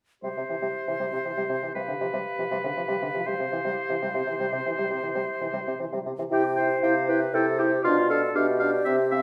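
A clear oboe with a smooth top and vibrato sits up front in this cheerful, lively classical-period movement for wind quintet, carrying a second line in 3/4 at 119 BPM in C major. The airy, hollow concert flute holds the melody between C5 and G5 but stays in the background, its notes tongued and touched with vibrato. Beneath them, a mellow, distant clarinet and a warm French horn with light vibrato fill in the accompaniment, while the bassoon, also up front, anchors the bass between B2 and C3. All five play together from 0.2 s to 9.2 s, moving between C and G7 harmonies, with a new section arriving at 6.3 s. A wet recital hall reverb gives the clarinet, horn and bassoon a roomy sound, and the passage is cut from a longer piece.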